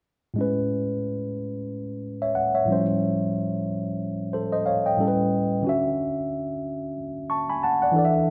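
A wet, roomy studio reverb surrounds this relaxed R&B excerpt at 91 BPM in A major, where a worn, slightly out-of-tune tine electric piano plays alone, clean and up front through a combo amp from 0.3 to 8.3 seconds across a range from A2 to C#6, with a swung sixteenth-note feel, moving from Amaj9 through A7alt and A9 to Dmaj9.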